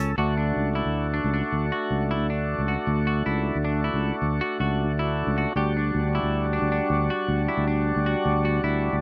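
A gritty, overdriven tonewheel organ sits up front with audible key click, a slow rotary speaker and a slapback echo, holding down the accompaniment in this driving, intricate progressive instrumental cut from a longer piece in 7/4. A growly fretless electric bass sustains beneath it with a direct, amped tone, while a bright, clean semi-hollow electric guitar picks compressed arpeggios. The harmony moves from D to Em7/D at 5.6 seconds, in a dry outdoor recording with little reverb.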